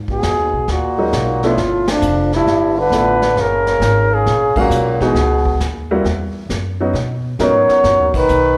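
A moderate recital-hall reverb surrounds this smoky, moody excerpt of small-group swing and bop, moving at 134 BPM in 4/4 with a swung eighth-note feel over rich extended chords from Abm9 through G13, Gbmaj9 and Dbm11 to Bmaj7. An up-front, mellow flugelhorn carries the melody with soft attacks and scooped notes, while a bright, forceful trombone with vibrato adds a distant second line. A woody, thumpy pizzicato upright bass and a roomy vintage brush kit with dark cymbals sit underneath, joined at 1.0 s by a short-sustained upright piano, and the band hits accents at 1.8, 4.5 and 8.1 seconds.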